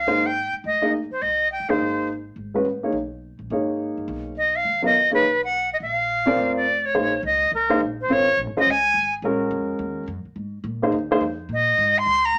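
Modal jazz at a brisk 210 BPM in 4/4, swung on the eighths, this short fragment of a longer piece has a cool, hypnotic mood and is tuned slightly flat, to A4 = 435 Hz. A bright, reedy concert flute carries the melody up front, airy and tongued with vibrato, playing in phrases that stop at 2.1 seconds and return from 4.4 seconds. A dark grand piano, mellow and intimate with its action noise audible, sits close beside it in the accompaniment, moving through Fm9, Abmadd9 and Bbadd9 before settling into Eb dorian on an Eb9sus4 from 6.9 seconds. Underneath, a pizzicato upright bass on steel strings gives a woody, thumpy low end throughout, sitting well back in the mix. A small, wet room reverb lends the ensemble a natural, close-knit sound.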